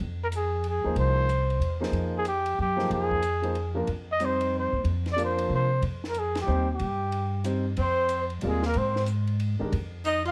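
Modal jazz in F dorian at a brisk 185 BPM in swinging 3/4, intense yet cool, with woody, growly pizzicato upright bass opening alone before a dark, scooped trumpet with vibrato and plate reverb takes the up-front melody, a compact cocktail kit with a high-tuned snare and punchy kick sits low in the mix, an intimate grand piano with audible action noise and long sustain comps underneath, the band hits an accent at 6.3 seconds, and a clear, close-miked tenor saxophone joins with a second line at 7.8 seconds as the chords move between Fm7 and Cm in this dark, lightly reverberant excerpt cut from a longer piece.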